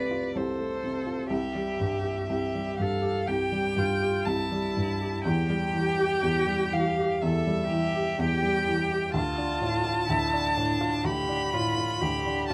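A light reverb surrounds this short passage from a longer classical work, with the violin and the baby grand piano placed up front. It is a slow, romantic movement for piano trio in C major, moving at about 62 BPM in 4/4 with a rubato feel, and its mood is serene and lyrical. The bowed violin carries the melody from C5 to B5 with a smooth, even tone and vibrato, while the cello sings a second line from D4 to B4, expressive and rich, with a soft attack, vibrato and portamento. The piano accompanies from C2 to G4 with a warm, natural, intimate, short-sustained sound in which its action noise can be heard. All three play together through the whole 12.5 seconds, tuned to A4 = 441 Hz. The harmony moves from F over C to C, then to E minor at 5.3 seconds and D minor at 9.1 seconds.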